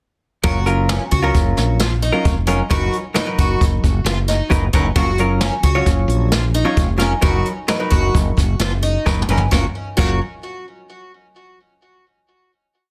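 A growly, up-front woody fretless electric bass locked to the boomy kick of a distant, roomy brush drum kit drives this intricate progressive instrumental in 5/4 at 132 BPM in F# major, with a dark, compressed hollow-body jazz guitar playing syncopated chord stabs in spread voicings and a shimmering, octave-doubled twelve-string acoustic guitar picking an ostinato through delay and plate reverb over alternating F#maj7 and Bmaj7/F# chords, until a drum fill at 9.1 seconds leads to a final F#maj7 chord at 9.5 seconds in a dense, heavily limited modern master.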